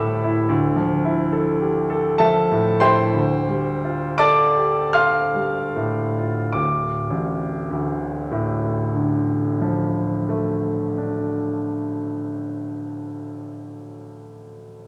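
Bathed in a wet recital-hall reverb with a 1.6-second tail, this hazy, nocturnal fragment of impressionist classical solo piano, cut from a longer piece, drifts in 9/8 at a rubato 23-39 BPM in D minor, where an up-front concert grand with deep bass, an open tone and long sustain spans D1 to F6, slows through its opening 6.6 seconds over Am9/D, Dm9 and F69/D before a second section settles onto Dm, and plays alone until 14.9 seconds.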